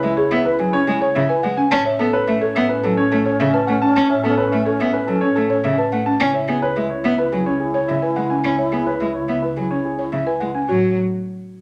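A piano melody, an airy alto flute line, a bowed cello, a buzzing soft-mallet marimba and a bowed double bass section sound together from the opening moment of this hypnotic, bright piece of minimalist classical pattern music in A major, moving at 107 BPM in a straight 4/4. The warm grand piano sits up front with a natural tone, carrying the melody, while the alto flute adds a second line with a crisp attack, vibrato and lifted highs, its expressive voice stopping at 10.5 seconds. Beneath them, the solo cello plays a rich, smooth, close accompaniment, also up front, and the marimba spins woody, round, mellow arpeggios with a dry, buzzing touch on its hardwood bars. The double bass section lies lower in the mix, giving the bottom a lush, symphonic, ensemble weight with its own vibrato. The harmony moves from C#m7 to Aadd9, back to C#m7 at 6.2 seconds, and settles on A at 10.7 seconds, all inside a moderate large-studio reverb, in a short passage cut from a longer work.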